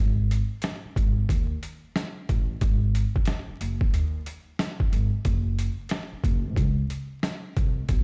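A woody, pizzicato upright bass with steel strings opens this moody, tough boom-bap hip-hop fragment, sitting up front in a low register. At 0.3 seconds a gritty, pitched-down sampler-style kit joins with a thumpy kick, medium-tuned snare and hi-hat, compressed and overdriven, riding a swung sixteenth-note feel alongside the bass. The dry parts sound as if played back on a big sound system in a bare stone room, with vinyl crackle running underneath.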